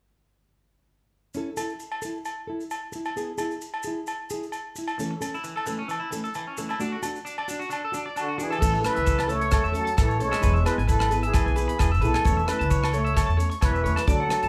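A plunger-muted trumpet carries the melody from 8.2 seconds with a soft, scooped wah-wah tone and light vibrato, joined by a brilliant trombone on a second line, in this joyful, carefree highlife guitar band piece at 132 BPM in A major with a swung 4/4 feel. Earlier, a dark, fingerpicked nylon-string guitar, grainy maracas and ringing, saturated agogo bells set things going, and a twangy, slightly broken-up electric guitar adds arpeggios from 5.0 seconds. A woody pizzicato upright bass and a tight, dry funk drum kit with bright cymbals arrive for the second section, with the band playing live together in a large studio with moderate reverb.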